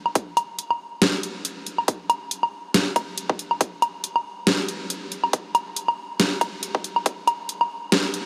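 Deep dubstep at 139 BPM in a half-time 4/4 with a light 16th-note swing, dark and heavy, taken from a longer piece as a build-up. A dubstep drum kit of hi-hat, deep snare and woodblock runs from 0.1 to 8.2 seconds, overdriven, layered and up front, while an electronic kick drum with a punchy, overdriven attack and high-pass filtering plays from 0.2 to 7.2 seconds. Both parts carry the close character of a small room, and the whole track is bathed in a moderate, huge ambient reverb with a 4.7-second tail.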